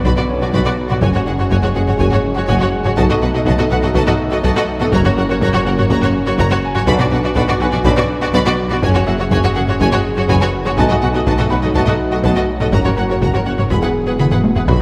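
A moderate scoring-stage reverb gives this tense, relentless cue a spacious, roomy finish, as a hybrid orchestral and electronic film score moves at 123 BPM in a straight 4/4 in F# minor. A huge, dark impact is barely audible at the opening, while a shimmering, retro pulse-width pad with chorus sits in the background beneath a clear, intense violin section carrying the melody. A second, distant violin line and a focused viola section add lush bowed vibrato. The low end is heavy with layers: a thick, beating, menacing detuned saw bass, a very quiet mellow tuba, a rich close cello section and a smooth, even double bass section all hold the bass. A distant, very quiet French horn section sustains chords, a round analog pluck with ring modulation and a moving notch spins arpeggios, and a bright, brilliant grand piano adds texture in the background. Band-limited, vintage-sounding taiko drums with heavy sticks sit in the background and play a fill from 14.2 to 14.7 seconds as the harmony cycles through Bm, F#sus2, B7 and F#, landing on Eadd9 at 13.7 seconds.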